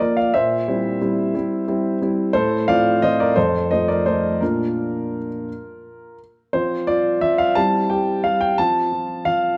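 A concert grand piano carries this short, playful and graceful classical-period sonatina alone, sitting up front with an intimate, natural tone, deep bass, long sustain and audible action noise. The pulse moves at 59 dotted-quarter beats per minute in 6/8, shaped with free rubato, and the instrument is tuned slightly low to A4 = 438 Hz. The opening section settles in B-flat major, passing through C7 over a B-flat bass, F over A and F7 before resolving to B-flat. At 6.5 seconds the music turns to F major for a brief second section, moving from a bare F fifth through C over G back to F. The piano spans F2 to A5, set in a moderate, large studio reverb that lends a dark, warm glow to the production, and the passage is cut from a longer piece, ending at 9.6 seconds.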